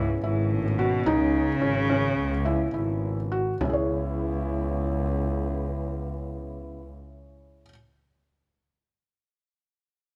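This short cut from a longer contemporary chamber piece sits in a light reverb. Set in C# minor at 212 BPM in eighths, in a straight 9/8, the music is urgent yet hypnotic, slowing down over its opening stretch on a C#m7 chord before a new section arrives at 3.6 seconds. A clear, focused bowed cello carries the melody up front with vibrato until 3.0 seconds, over a dark, woody bowed double bass with vibrato holding the low end. A felt-muted upright piano plays soft, mellow arpeggios with audible action noise and a vintage character, while a brass ensemble sustains present, classical-style chords beneath. A deep frame drum, played with soft hands in a small room, enters very quietly at 1.1 seconds.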